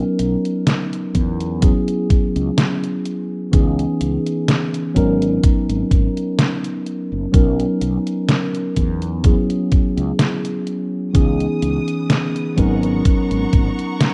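This short cut from a longer piece has the rough, dry sound of a home demo dubbed to cassette tape. It is a woozy, nostalgic vaporwave groove in G# minor at a slow 63 BPM in 4/4, with a light swing on the sixteenths. A mellow, clean tine electric piano sits up front playing the chords, touched with subtle chorus and tape echo, while a fretless electric bass with analog chorus sits low beneath it. A detuned 8-bit drum machine supplies hi-hat and a medium-tuned snare, and a thumpy electronic kick joins at 1.1 seconds; both have a sampler-style, tape-softened tone, sound re-recorded in a large room and sit up front. At 11.1 seconds a lush, bowed symphonic string section enters quietly, with vibrato and a smooth top, holding sustained chords to the close. The harmony cycles twice through Bmaj7, E6, C#m9 and G#m11.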